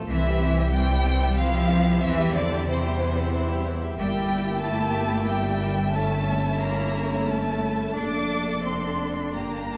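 Melancholic and yearning, this brief rubato passage from a slow romantic string-orchestra movement in 3/4 sets an expressive, vibrato-rich violin melody over a clear background second violin line, smooth distant violas, intense lightly vibrato cellos and an up-front double bass section, all bowed within a dark concert-hall reverb as the harmony moves from C toward Dm/F at 8.0 seconds.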